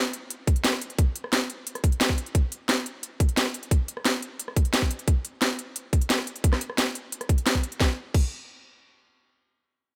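A straight 4/4 drum and bass beat runs at 176 BPM in this short, mechanical and tense excerpt. The layered electronic drum kit starts at 0.1 seconds with a cracking snare, crisp hi-hats, rim clicks and crash cymbal, and a tight electronic kick joins at 0.5 seconds. Both parts play up front with a small-room character and little reverb until they stop at 8.2 seconds.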